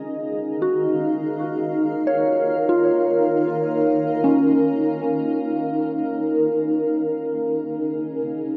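Drifting in free time, this melancholic yet serene ambient fragment, cut from a longer piece, pairs a dark, cloudy granular pad sustaining a C#sus24 chord up front with a pure, gentle FM synth bell tracing soft arpeggios through chorus, phaser and diffuse delay, all bathed in a huge reverb that lets the 8.6 seconds blur and hang.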